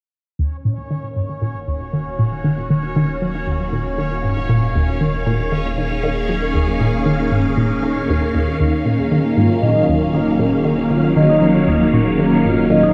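A squelchy, resonant blip-pluck riff with phaser and tape echo drives this hypnotic, expansive excerpt of sequencer-driven ambient space music at 117 BPM in Eb minor, over a swirling, phased string machine holding sustained Ebm7 chords, a round, deep analog bass, both fading in through the first 8.6 seconds, and a bubbling stepped-filter texture shimmering with chorus, while metallic, ringing vibraphone arpeggios with tape echo and a filter sweep enter at 8.6 seconds, all set in a dark production with moderate plate reverb.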